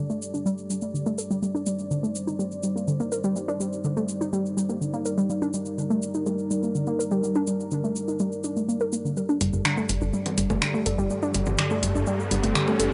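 This excerpt of hypnotic, dark melodic techno moves at 124 BPM in a straight 4/4, with a grainy, close egg shaker ticking from the start in G minor. A warbly, dusty pluck plays arpeggios up front, detuned and lo-fi with chorus and tape echo, while a filter sweep runs over it through the first 9.2 seconds. Beneath it, a deep, moody analog pad holds sustained chords with a slow attack, moving from Gsus2 to Cmadd9 and back. The build-up begins at 9.2 seconds, and at 9.4 seconds a punchy, funky analog bass with tube saturation settles on G1 while an overdriven deep house kit of congas, finger snaps and metallic hi-hats comes in up front, re-recorded in a large room. An evolving pulse-width drone joins in the background, and a riser enters at 10.7 seconds. The sound is dry and gritty like hardware, with light reverb and a dull top end.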